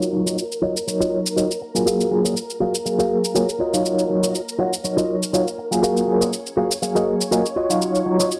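A swung, layered electronic shaker drives this sunny, feel-good filtered disco house groove, where an up-front, reedy electric piano with fast tremolo, phaser and 12-bit grit carries the accompaniment, a bright, clean, picked guitar riff rings out, and a lush, slow-attack string machine holds sustained chords, heard beneath a filter sweep in a dry, tape-saturated mix touched by plate reverb.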